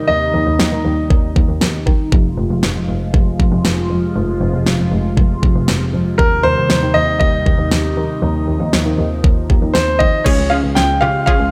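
Synth-pop in F minor at 118 BPM, melancholic yet driving, this excerpt from a longer piece sets a swirling phased analog pad with chorus beneath an expressive bowed double bass with vibrato and portamento and an up-front electronic drum kit with a knocking kick and fat snare, while a brilliant grand piano with analog delay sounds a brief melody at the opening, returns at 6.2 seconds, and is joined at 10.3 seconds by a detuned sawtooth unison pluck as the harmony shifts to Db, inside a light reverb.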